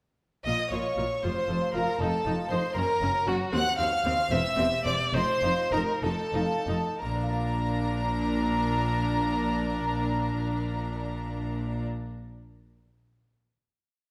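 A short, complete baroque-style concerto movement in 6/8, driving and stormy, moving at 59-79 BPM in dotted quarters before it broadens from 2.8 seconds. A single expressive solo violin sits up front, vibrato-laden with a soft attack and portamento, carrying the melody with the chamber violin section an octave above, whose sound is focused and rich. A smooth, distant second violin section stays in the background, doubling the tune in unison and at the octave. Violas supply repeated notes and sustained chords, while cellos give repeated and held bass notes, doubled by an intense, clear double bass section. A delicate fingerpicked lute with nylon double strings ripples quietly beneath. The ritornello moves from B-flat minor through F7, G-flat and a diminished chord before landing on a long B-flat major final chord at 7.0 seconds, all set in a moderate scoring-stage reverb.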